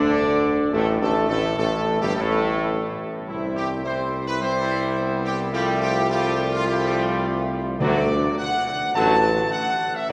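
Heard in a church or concert hall, this passage sits inside a wet, cathedral-like reverb with a long decay that surrounds the brass in a solemn, majestic glow. It is a short classical passage cut from a longer piece, in a steady, straight four. A dark, punchy trumpet section carries the melody, tight and up front though still roomy. Beneath it, a mellow French horn section with light vibrato and a warm, smooth-topped trombone section hold sustained chords further back, while a solo tuba anchors the bass with a mellow, up-front tone. The harmony moves from D through C and an F chord over C before landing on D at 7.8 seconds, where timpani struck with hard mallets add a brief, articulate, close and dry accent in the background.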